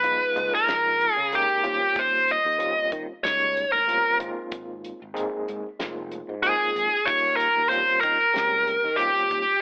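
A straight 4/4 groove from a damped 70s drum kit with a tight kick and medium-tuned snare, together with a growly sustaining fretless bass, drives this funky, soaring electric jazz fusion excerpt, where a smooth overdriven lead guitar carries the melody up front with slapback echo and plate reverb over a gritty, reedy electric piano shimmering with fast tremolo through a combo amp, as the chords move from Db69 to Eb13 and Ab69, the recording carrying a telephone-like tone in a moderate studio room.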